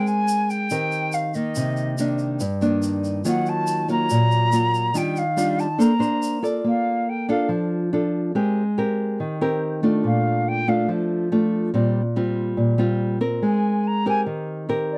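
Sunny and sophisticated, this bossa nova excerpt sets an airy, vibrato-tinged concert flute melody over fingerpicked nylon-string guitar chords full of lush major-ninth colour, with a grainy, mellow tube shaker in the background until 6.7 seconds, just after the flute begins an expressive, tongued solo at 6.6 seconds, all captured in a dry, close 1970s-style studio sound with light reverb.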